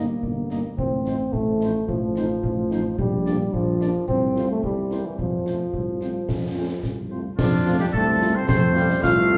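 A rousing, festive military-style march for wind band in F major, moving at 109 BPM in a straight 2/4, cut from a longer piece and heard from further back in a recital hall with a wet, lingering reverb. A dark, soft-edged trumpet section carries the melody over a warm euphonium second line with vibrato, while a mellow, very quiet French horn section accompanies, a close-miked tuba anchors the bass, and concert bass drum, snare drum and dark-toned clash cymbals play from 0.2 to 9.2 seconds. After the harmony settles through F/C and C7 onto F, a bright trombone section enters in the background at 7.4 seconds with sustained chords.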